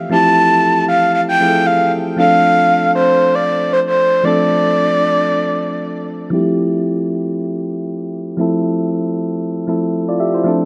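Amapiano with a late-night, soulful mood and a gently swung 16th feel, where soft, round electric-piano-like synth keys with chorus and a mellow low-pass tone lay down Fmaj9 and Dm7 chords throughout, while a breathy, flute-like synth lead with vibrato, chorus and digital delay carries the melody up front until 6.1 seconds, after which a filter sweep on the keys shapes the second section of this excerpt in light reverb.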